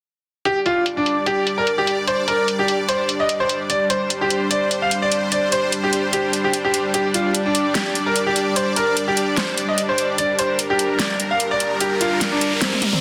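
Heavy wobble dubstep in a chaotic, menacing mood, moving with a swung half-time feel as a brilliant, vintage-toned grand piano carries the melody through tape echo, up front over a lush, detuned supersaw pad holding sustained chords with a slow attack and long release. The electronic, layered drum kit hits with a huge snare, metallic hats and toms, all low-pass filtered and tape-warm. Near the close a riser sits in the background from 11.3 seconds and a drum fill lands at 12.6 seconds, all set in a moderate digital room reverb and a dense, heavily limited master.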